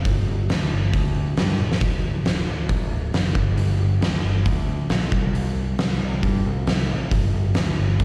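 From the first moment, an overdriven picked electric bass with a dark, round, up-front tone and an oversized, low-tuned acoustic drum kit with a punchy kick, fat snare and gritty, saturated character drive this cathartic, restless quiet-loud alternative rock passage at 136 BPM in a straight 4/4, with a drum fill at 1.6 seconds, all heard as a live gig through the venue's PA and cut from a longer piece.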